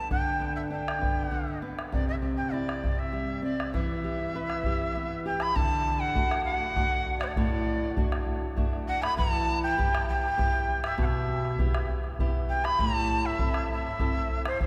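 Melancholic yet festive, this Andean folk excerpt moves at 99 BPM in a straight 3/4, with a large quena carrying the melody in a breathy, reedy voice with vibrato and a crisp, chiffy attack, while a fingerpicked flamenco guitar with fresh strings supplies accompaniment. A deep, dark bombo, compressed and saturated, enters at 0.1 seconds, and all three parts sit up front in a church or concert hall swathed in cathedral reverb. The chords pass from G through C and Em before the second section opens at 5.6 seconds on D, moving on to Em and Am.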